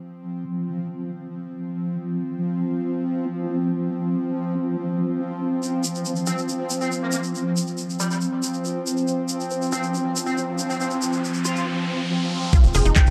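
A bubbling, resonant sawtooth texture with random filter steps opens this intense, alien psychedelic trance excerpt at 139 BPM, holding sustained F chords under chorus, its own reverb, a sweeping filter and sidechain pumping, joined by a grainy, mellow tube shaker at 5.6 seconds and a metallic, wobbling FM bass line with chorus and digital delay at 6.3 seconds. A riser climbs from 10.5 seconds into an electronic impact at 12.5 seconds, where a lush, detuned unison pluck riff with tape echo arrives alongside an overdriven, knocking kick and a layered drum kit with metallic hi-hats, handclaps and rim clicks, followed a moment later by a tight, nasal sequencer bass on F1. The dark, moderately reverberant mix keeps the kick and bass up front.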